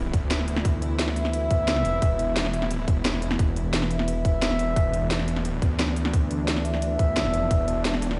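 Heard through a big sound system in a bare stone room, this short cut of aggressive, dark technical drum and bass at 175 BPM has a dulled top and a light, hard-walled reverb. A background sub drop and impact open it as a thick, chorused, tube-saturated detuned saw bass and dark, woody, bowed string chords pumping under sidechain start together. From 0.1 s an overdriven, tight electronic kick and a tape-warm kit with cracking snare and crisp hats sit up front, while a dark classical-style brass section stabs through delay from 1.0 s.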